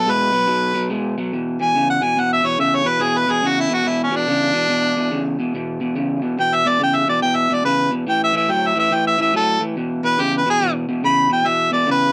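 Rollicking yet laid-back, this short blues cut from a longer piece swings along at 142 BPM in 4/4, with a loose shuffle to its eighth notes in E mixolydian. A harmonica carries the melody as a jazz-style solo from start to finish, sitting up front with a warm, present tone, light vibrato, scooped notes and a touch of overdrive grit. Beneath it, an electric guitar through a small old amp plays a picked riff in its low register, twangy and slightly broken-up, also up front but quieter than the harmonica. The harmony opens on B5 before settling on E5 at 1.3 seconds, moves to A5 at 8.1 seconds and returns to E5. Light reverb gives the pair a relaxed, roomy feel.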